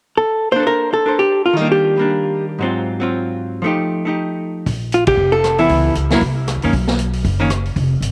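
A fingered, compressed hollow-body guitar with tape echo opens this playful small-group swing-and-bop fragment, soon joined by a clean, picked archtop guitar in accompaniment, before a woody pizzicato upright bass and a vintage drum kit with a punchy kick and dark cymbals enter at 4.7 seconds, the band striking an accent at 5.0 seconds.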